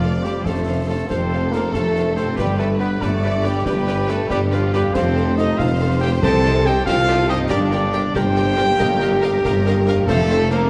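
A mellow French horn section holds sustained chords in this heroic, adventurous film-score passage in 12/8, while a distant, punchy trumpet adds stabs. Violins carry a lush, vibrato-rich melody with a very quiet, focused second line, an intense viola section plays the accompaniment, and a ringing harp plays thumb-plucked arpeggios, over a bass of rich double basses, expressive cellos and a vintage tuba. Hard-mallet timpani strike at the start and return at 6.2 seconds, concert snare, bass drum and bright clash cymbals sit in the background from 0.2 seconds, and the ensemble is set in a wet scoring-stage reverb.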